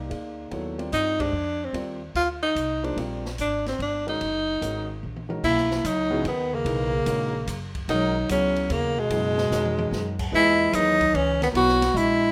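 A breathy tenor saxophone leads this brief, open and searching modal jazz excerpt at 147 BPM in a swung 3/4, its vibrato and scooped notes riding up front over a grand piano, a woody, thumpy pizzicato upright bass and an acoustic drum kit with dark cymbals and a boomy kick. The harmony moves from Ebmaj9 through Gb69 into B major at 5.4 seconds, where a mellow bass clarinet enters with a smooth-topped subtone second line, and drum fills arrive at 5.0 and 9.5 seconds. A small, moderate room reverb sets the group in a rough, homespun demo mix.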